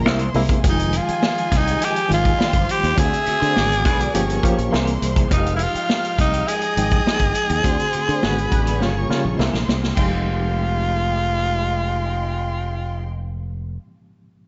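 A straight 4/4 groove from a punchy vintage drum kit, which breaks into a fill at 8.8 seconds and drops out at 10.1 seconds, anchors this smooth, cinematic excerpt of lush 1970s-style soul, where a raspy, gritty tenor saxophone carries the up-front melody with scooped notes over a bright fingered electric bass, a barky, lightly overdriven electric piano with fast tremolo, a very quiet, slightly broken-up picked guitar riff, a background violin section sliding with expressive portamento, and softly sustained symphonic string chords, all set in light reverb and studio ambience.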